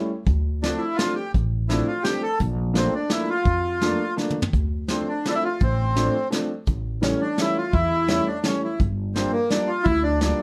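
A moderate studio reverb and lossy compression artefacts colour this short cut from a longer musette waltz, which has a nostalgic, bittersweet mood. It moves in 3/4 at 169 BPM with a straight feel in D minor, tuned to A4 = 443 Hz. The reedy bandoneon carries the melody up front from 0.6 seconds, its boxy small-room tone sitting between A3 and A4. A woody, open upright piano supplies accompaniment from the very start. A thumpy pizzicato upright bass with steel strings and a vintage brush kit with a punchy kick and medium-tuned snare join at 0.3 seconds, the drums adding a brief fill at 4.2 seconds. The harmony passes through Dm7, Bbmaj7, A7 and Gm7.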